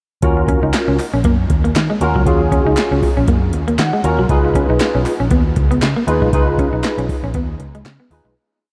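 Funky and danceable, this short early-eighties boogie funk piece sets a barky, chorus-tinged tine electric piano pushing rootless chords (with a brief fill at 3.5 seconds) over a round, foam-muted fingered bass, a punchy overdriven analog drum machine with a deep kick and metallic hats, a twangy, slightly broken-up fingered guitar playing a muted single-note line, and very quiet crisp handclaps on the backbeat, all moving from Ebm9 to Db7 in a dreamy, reverb-soaked mix that fades out from 6.3 seconds.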